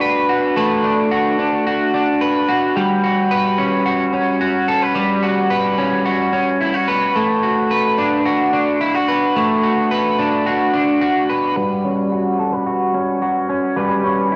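A dream pop piece cut from a longer recording, ethereal and haunting in mood, moving at a straight pulse in four. A lone electric guitar carries the whole passage from 0.0 to 14.4 s, picked and twangy with a slightly broken-up edge, sitting up front in the mix within a compact range from G3 to B4. Its tone passes through analog chorus, a low-pass filter and cassette tape, giving the part a softened, faintly worn character. The harmony drifts between a D6 chord and a rootless Em69, shifting at 2.8 s and again at 7.2 s before returning to the Em69 at 11.6 s. A lush hall reverb with a long tail surrounds the home cassette recording, lending the lone guitar a spacious, hazy glow.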